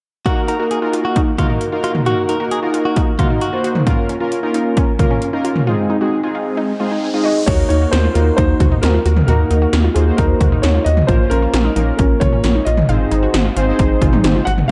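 Driving straight 4/4 at 133 BPM, this cool, dark synth-pop piece opens on punchy, overdriven 80s electronic pad drums with gated snare and toms, fat, detuned analog synth brass with chorus, a warbling unison pluck playing arpeggios through analog delay in the background, and a brief clean electric guitar second line that stops at 3.7 s. An electronic riser then builds from 6.3 s, and at 7.2 s a natural-toned baby grand piano enters carrying the melody through delay. At 7.5 s a rubbery, bouncy square bass joins beneath it, all inside a moderate, lush hall reverb.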